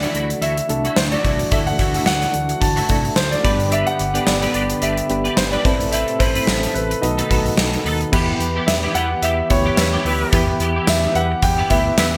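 Uplifting and nostalgic, this 1980s-style pop excerpt in G major moves at 109 BPM with a light sixteenth-note swing, as a concert grand piano carries the melody with delay over soft, rounded electric-piano-like synth keys, a brassy detuned analog pad in the background, and a bright, twangy twelve-string electric guitar riff shimmering with ensemble chorus and delay. Underneath, a smooth gliding synth bass sits dark and sustained, while a punchy, up-front gated drum kit with bright cymbals and tambourine drives the groove through a changing progression that settles on E minor at 8.1 seconds. At 9.0 seconds a tight, vintage horn section adds punchy stabs with light vibrato, all framed by a moderate plate reverb and a bright digital sheen.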